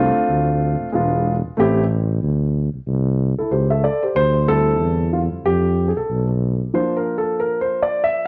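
Worn, warbling cassette tape with a muffled top end and a small echo-chamber room frames this warm, smooth hip hop excerpt with a swung feel, where an up-front, dark concert grand piano with short, vintage sustain and deep lows lays jazzy chords such as a rootless Bbmaj9 and Dm11 beside a jazz-style tuba bass, which stops at 6.7 s while the piano carries a solo from 4.2 s to the cut at 8.3 s.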